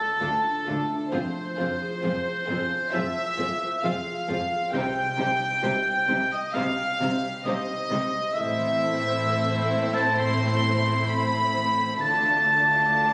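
A clear, roomy solo oboe sits up front in this sorrowful, longing cinematic film-score excerpt, sharing the high register with a floating, sul tasto violin section that carries the melody in free, rubato time. Beneath them a ringing concert harp spins arpeggios, while a dark, intimate studio violin section and a woody viola section with vibrato join at 0.2 s alongside pure, distant cellos and lush double basses, moving through Dm, Fm, Cm and Am before returning to Dm. The scoring-stage reverb sounds as if caught on a phone in the room, with a club-like ambience and compression.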